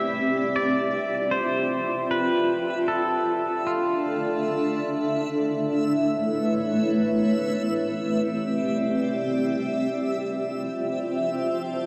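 A cloudy, mellow granular pad and a faint, reversed, dreamy swelling texture open this luminous, weightless ambient fragment as the synth sound fades in, while a clean electric pedal steel guitar, up front with fingerpicks, slide, volume swells and delay, carries a melody until 4.8 s over chords moving from Fmaj7 through Dm and Aadd9 to Cmaj7, all set in a vast, echoing cathedral space.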